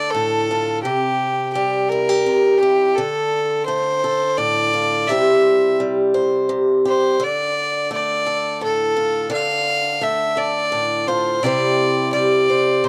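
Brooding and heartbroken, this country excerpt in D minor moves at 85 BPM in 3/4, with a clear, biting fiddle carrying the melody in a nasal, earthy voice with light vibrato and an airy bow, over an up-front, boxy, picked swing-style acoustic guitar that follows the slow shifts between D minor and C in a dry, close 1970s-style studio sound with a modest booth ambience.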